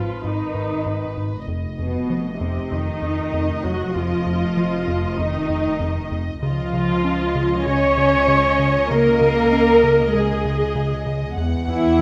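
This ominous, eerie suspense film-score excerpt at 97 BPM opens with every part sounding at once. An up-front, woody viola section carries the accompaniment with vibrato, while a faint, intimate violin section plays the melody sul tasto with light vibrato above it. Beneath them, floating cello and double bass sections hold the bass with soft attacks, and a rubbery, nasal square-wave synth bass plays a bouncy riff with a fast filter-pluck attack, all in a moderate scoring-stage reverb as the harmony moves from G#m through F5 and C#add9 to Esus2.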